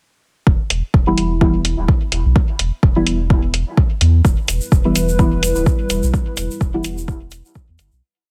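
An overdriven, up-front four-on-the-floor kick and a round sine sub bass riff drive this cavernous, hypnotic dub techno piece, joined by muffled, pitched-down hi-hats and sparse, detuned chord stabs trailing dub echo, with a moody square-and-sawtooth pad and a grainy egg shaker arriving near 4.2 seconds before a fade from 5.5 seconds, all under a heavily compressed radio-like sound.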